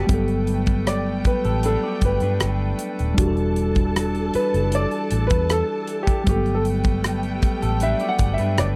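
A clear concert grand piano carries the melody from 0.9 seconds in this silky, bittersweet fragment of lush 1970s-style soul, moving at 78 BPM in a straight 4/4 over Gmaj9, Em11 and back to Gmaj9. Beneath it sit a worn, slightly out-of-tune tine electric piano, a reedy organ with key click, light overdrive and a slow rotary speaker in the background, a slightly broken-up guitar riff through a small old amp with spring reverb, and a bowed string section with vibrato and portamento. A dark, foam-muted fingered bass and an acoustic drum kit with a punchy kick, hi-hat and rim click sit up front in a dry, close studio sound.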